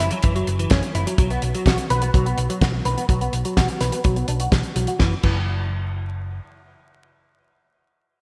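Melodramatic and danceable, this italo disco excerpt at 126 BPM sets bright, compressed arpeggios from a clean, direct-recorded electric guitar, treated with analog chorus, delay and a filter sweep, over a dark, round hollow-body picked bass that carries on alone until 6.4 s, a damped 70s kit with a fat snare, hi-hat and crash in gated reverb, and a tight, dry kick, all moving from F#5 to B5 power chords inside a lush hall reverb with vinyl crackle and bright 1980s-style digital production.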